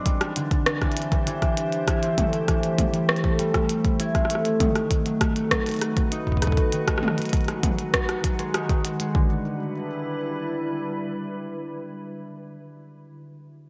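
A glassy FM pad and a concert harp open together, the pad holding ethereal, slow-blooming chords softened by ensemble chorus and its own reverb while the thumb-plucked harp rings out arpeggios through a digital delay. This is cerebral, glitchy IDM at 99 BPM in 4/4 and E minor, cut from a longer piece, with the harmony moving from Cadd9 through Am7, B7 and G#m7. From 0.1 seconds an up-front electronic kick with a deep thump joins a glitchy kit of clicky hi-hats, rim clicks and toms, the kit also fed through digital delay and both re-recorded in a small room. The drums drop away around 9.1 seconds as the chords settle on Em7, leaving the mellow pad and the acoustic harp to carry on alone until the pad fades at 12.3 seconds and the harp finishes at 13.0 seconds. The production is bright and 1980s-style digital, set in a moderate, lush hall reverb.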